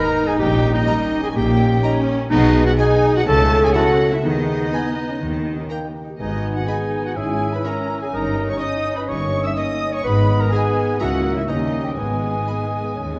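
A straight 4/4 pulse at 124 BPM drives this mischievous, magical cinematic cue in G# minor, cut from a longer piece. A focused chamber violin section carries the melody over second lines from pure, bright flutes, a present, warm solo clarinet, a lightly vibrato oboe, and a lush symphonic violin section with portamento that slips in at 0.9 s. Beneath them, a mellow bassoon, a rich viola section, dark, roomy French horn chords and ringing fingerpicked harp arpeggios fill the middle, while a smooth, distant cello section and an intense double bass section enter at 0.4 s, all bathed in a dark, reverberant scoring-stage sound.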